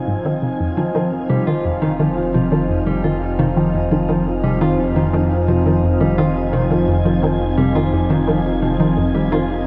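Ambient, sequencer-driven space music with a cosmic, mysterious mood, built on a single sustained Fm7 chord: an evolving, detuned pad with chorus and shimmer reverb sits up front, over a fat, thick analog bass, while a breathy, wind-like tuned noise texture fades in across the whole passage. A juicy, squelchy blip pluck carries a bright riff through ensemble chorus, analog delay and shimmer reverb, and from 0.8 seconds a clean, fingered electric guitar adds mellow arpeggios through its own delay and shimmer reverb. The production is dark and drenched in a huge ambient reverb with a 7.8-second tail, and the passage is cut from a longer piece.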